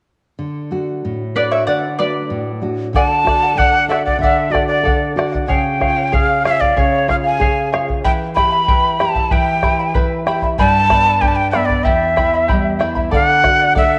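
Festive and earthy, this excerpt of Andean folk moves at 94 BPM in a straight 2/4. A deep classical nylon-string guitar opens at 0.4 seconds, and a shimmering, double-strung charango joins at 1.4 seconds, both fingerpicked. A dark, close bombo joins at 2.9 seconds, and at 3.0 seconds a breathy, reedy cane quena steps up front with tongued notes and vibrato, carrying the melody over chords that move from D through C#, Em and G. The guitar, charango and quena carry a cassette-tape colour, and the whole home cassette recording sits in a lush hall reverb.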